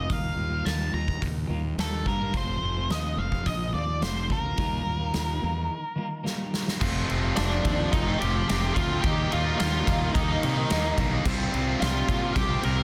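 Bittersweet and anthemic, this quiet-loud alternative rock piece, cut from a longer work, moves at 108 BPM in a straight 4/4 and sits in F mixolydian, with chords shifting between Ebadd9 and F before settling through Eb to Csus4. An octave-fuzz lead guitar carries the melody up front from the start, its dark, fuzzed-out tone touched by a slapback echo, while a growly fuzz fingered electric bass sits just as prominently beneath it. In the opening stretch a bright, twangy twelve-string electric guitar picks compressed arpeggios through a harmonic tremolo, and a huge arena drum kit with a punchy kick and medium-tuned snare rings out in a big, natural room. A drum fill at 6.3 seconds leads into the heavier half at 6.8 seconds, where the twelve-string drops out and three riffing guitars take over behind the lead: an overdriven guitar, a double-tracked distorted guitar, and a sludgy, very quiet guitar underneath. 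Light reverb and a dense, heavily limited modern master keep the whole thing loud and tightly packed.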